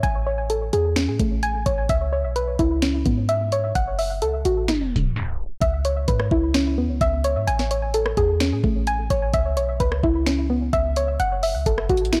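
Hard-hitting and brooding, this half-time trap hip hop excerpt at 129 BPM in C# minor sets a soft, round pluck playing chorused, low-pass filtered arpeggios with digital delay over a deep, boomy, clean 808-style bass and an up-front trap kit of knocking kick, sharp snare, bright hi-hats, rim clicks and finger snaps, all under light reverb and a blown-out, overdriven sheen, with a tape stop from 4.7 to 5.6 seconds leading into the second section as the chords cycle through Amaj7, C#m7 and F#m7.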